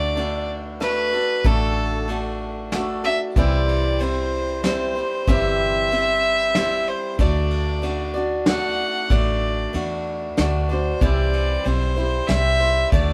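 A clear, biting fiddle carries the melody from the start over a bright, boxy picked swing-style acoustic guitar and a round, foam-muted vintage electric bass, with a soft brush drum kit of dark cymbals, snare, rim click and tight kick joining at 0.2 s. This nostalgic, down-home honky-tonk and classic country tune moves at 94 BPM in 3/4 in D mixolydian, swaying between D and C chords. The band sounds like it is playing live together in a small room with moderate reverb, and the fiddle's light vibrato and earthy tone stand out in this short cut from a longer piece.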